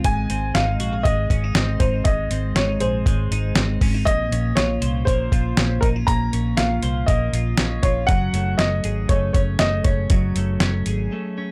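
A dusty, sampler-style soul drum kit sits up front with a thumpy kick, fat snare and hi-hat, gritty and compressed, driving this bright, breezy excerpt of jangly indie pop at 119 BPM in a straight 4/4. A round, punchy, foam-muted electric bass holds the low end while a twangy, clean twelve-string electric guitar picks arpeggios with subtle chorus and digital delay, and a woody, slightly detuned upright piano carries a smooth vintage melody, also touched by delay, over chords moving from Ab to Bbmadd9 to Gbmadd9. The dark, warm production has little reverb, and a brief break arrives at 11.1 seconds as the bass drops out, leaving guitar and piano to ring until 11.5 seconds.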